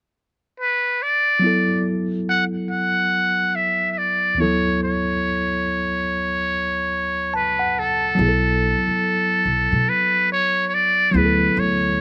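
R&B with an introspective, soulful mood, this excerpt opens with a trumpet in a metal mute carrying the melody from 0.6 seconds, its buzzy, breathy tone sitting intimate and up front. A worn, slightly out-of-tune tine electric piano enters at 1.4 seconds as mellow accompaniment, adding a fill just before a pizzicato upright bass arrives at 8.2 seconds with a woody, thumpy pulse. The swung 16th-note feel and dry, roomless sound keep the moody changes close and direct.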